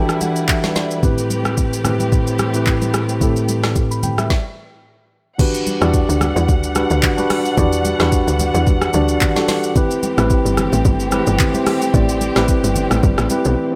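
A tight, punchy log drum bass lands at 5.8 s in this deep, late-night amapiano piece at 110 BPM in E minor, just after a brief stop at 4.3 s gives way to the drop at 5.4 s, joining a mellow, clean tine electric piano that opens with a fill over Em9 and Am9 chords, distant bowed strings with vibrato pumping under a sidechain, a smooth R&B kit up front with soft kick, woody snare, metallic hats, handclaps, rim clicks, shaker and crash, and thick-skinned congas tucked in the background, set in a light reverb.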